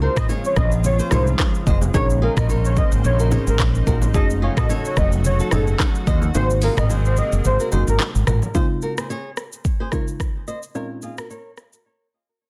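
A round, punchy fretless electric bass sits up front in this sunny, romantic afrobeats excerpt at 109 BPM in Db major, backed by an electronic afro-pop drum kit with a deep kick, dark hats, handclaps, rim clicks, shaker, toms and a softly clipped snare, while very quiet bongos and congas add bright hand percussion. A velvety synth lead carries the melody through chorus, phaser and delay over a thick, warbling unison pad, a soft wave-folded pluck and a fingerpicked acoustic flamenco guitar riff that is filtered and echoed. The kick drops out at 6.3 s, and around 8.5 s the lead, bass, pad and hand drums fall away as the dense, heavily limited mix fades out, leaving the pluck, guitar and drums.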